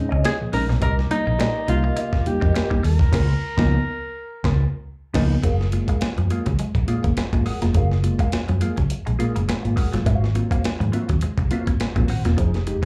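A dark, round, foam-muted electric bass sits up front in this cool funk excerpt at 104 BPM, alongside a gritty, compressed sampler-style breakbeat kit of thumpy kick, medium-tuned snare, hi-hat and crash with a swung sixteenth feel. A reedy electric piano with light overdrive, fast tremolo and slapback echo plays stabs over Bbm11, Cm7 and Db13, while a dark, mellow guitar with wah comps and a bright, twangy picked guitar with phaser plays a riff in the background. A breathy alto saxophone with subtone and scooped notes carries a jazz-style melody until 4.8 s, the band hits an accent from 3.1 s, and the harmony moves to Gbmaj9 and Ab13 from 5.4 s, heard through a club PA with light reverb.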